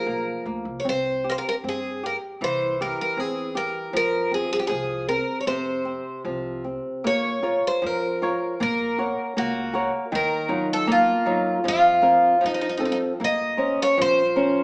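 Rubato and unhurried in a loose two-beat metre, this fado-style ballad is cut from a longer piece and carries a longing, passionate mood. A picked twelve-string acoustic guitar sits up front with the melody, its octave-doubled strings giving a shimmering, slightly boxy tone. Beside it, a fingerpicked flamenco guitar plays the accompaniment, also up front, with finger squeaks audible on the strings. An upright bass played pizzicato stays in the background, woody in tone and strung with steel strings, entering at 0.1 s and stopping at 14.5 s. The harmony moves from F harmonic minor to Bb harmonic minor for the second section at 7.0 s. The band plays live in one room, heard through a moderate large studio reverb and a small-speaker sound.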